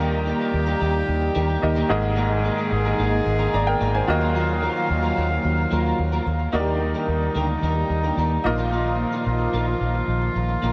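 This pop excerpt feels romantic and nostalgic, drifting in a steady straight four. A classical-style brass ensemble holds sustained chords up front throughout, while a clear baby grand piano with a short, natural sustain plays accompaniment. An electric guitar at the edge of break-up picks a compressed, slightly gritty riff colored by ensemble chorus and tape echo. Anchoring the low end, a vintage fingered electric bass sits up front with a dark, round, punchy, foam-muted tone. Everything is soaked in a huge ambient reverb that gives the mix a dreamy, hazy glow, and the music moves into a new section at 6.5 seconds, opening onto an Ebmaj7 chord before settling on Bbsus4.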